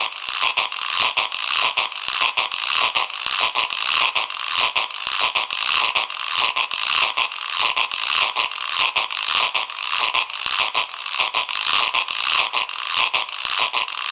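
Latin percussion at a driving 201 BPM in straight 4/4, this passionate fragment of a longer piece features a raspy acoustic guiro, close and up front in a dark production with light reverb, playing from 0.1 s to 14.1 s and carrying on through a new section at 6.7 s.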